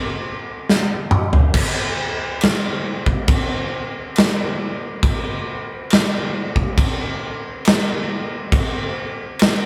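A big rock drum kit carries this short metal excerpt on its own, entering at 0.7 seconds with a fill that runs to 1.5 seconds before settling into a slow, straight 4/4 groove. The mood is hypnotic and sludgy, with the heavy pace giving each hit room to land. The kit sounds acoustic and up front, pairing a punchy kick and a medium-tuned snare with bright cymbals, and the crash and toms round out its voice. Its own sound carries a big-room character, while the overall recording stays dry, with little reverb and only a small room ambience. The drums stop at 9.6 seconds, just before the clip ends.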